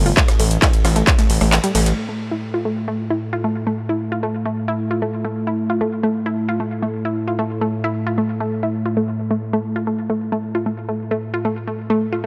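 A straight, driving pulse propels this intense, industrial peak-time techno excerpt, with a distorted electronic kick up front, metallic hats, handclaps and rim clicks from an electronic kit, and a dark, brushed jazz kit of ride and high-tuned snare tucked in the background, its cymbals and the electronic hats pumping alongside a gritty, saturated synth bass. The drums and bass fall away by 2.0 seconds after a band accent, leaving a punchy, detuned unison pluck riff with tape echo and a nasal, evolving analog drone with chorus to carry on over an A5 chord. The hardware sound is dry and raw, touched with light reverb and studio ambience.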